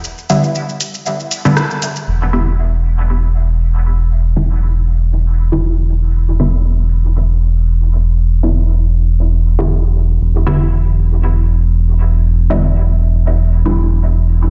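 This meditative, nocturnal dub techno excerpt opens on a punchy analog drum machine playing hi-hat, rim click and shaker, which drives a 2.1-second break at 118 BPM in 4/4, with a light 16th-note swing. At 0.3 seconds a filtered dub chord stab arrives: a muted, detuned blend of sawtooth and square waves with a filter pluck, fast attack and short decay, sitting up front and colored by phaser and dub echo. The stabs outline an E minor seventh chord, the piece staying in E minor, and the band lands an accent just before the bass enters. From 2.1 seconds a round analog bass holds a deep E1, mixing sine and sawtooth into a dark, sustained tone with a fast attack that dominates the mix, while a filter sweep works across the stabs. The whole track sounds as if played through a big sound system in a bare room, with stone-room reverb and a top end that stops at 7.6 kHz.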